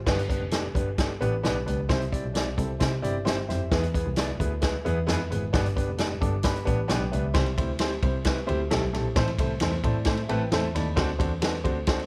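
A woody upright piano, a bowed double bass with a nasal, biting tone and light vibrato, and a swinging big-band drum kit with a punchy kick all start together in this joyful, uptempo 1960s-style soul cut at 132 BPM in C major, with the up-front piano adding fills around 3.0, 6.0 and 9.6 seconds over a studio ambience touched with light reverb.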